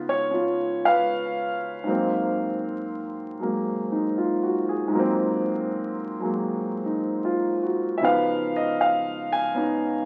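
A lone concert grand piano opens this brief fragment of a longer piece, sounding through the crackle and aged haze of a very old 78 rpm record. The mood is playful and swinging, a solo jazz performance in 4/4 with a lilting swing on the eighth notes. The piano sits up front with a natural, warm tone and a deep bass, ranging from Ab2 up to Ab5. Its harmony rests on a Db9 chord, moves to Ab9 at 1.9 seconds, and returns to Db9 at 8.0 seconds. A wet studio ambience with a short tail surrounds the instrument, giving the 10.1-second passage a close, intimate, old-time character.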